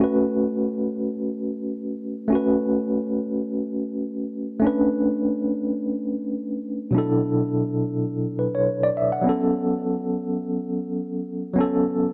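A worn, slightly out-of-tune tine electric piano plays alone, sitting up front with a clean tone through a combo amp and a medium tremolo. This lush, romantic soul excerpt moves at 104 BPM in A major with a gentle sixteenth-note swing, drifting through rich extended chords before settling back home on A69 at 9.3 seconds. A moderate plate reverb with a long 3.4-second tail gives the short passage a soft, glowing space.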